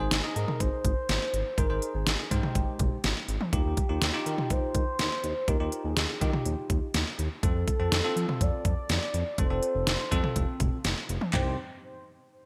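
Synth-pop with a nocturnal, driving mood, this short section cut from a longer piece moves in a straight 4/4 through Ab, Ebadd9 and F before touching Cm at 11.3 seconds. An up-front, overdriven pop drum kit with a knocking kick, deep snare, crisp hats, toms and handclaps sits in gated reverb alongside a smooth, sustained sawtooth-and-square synth bass with a fast attack and vibrato. A round, horn-like synth lead carries the melody through chorus, phaser and delay over a bell-like tine electric piano bathed in lush chorus, all framed by bright 1980s-style digital production and light reverb.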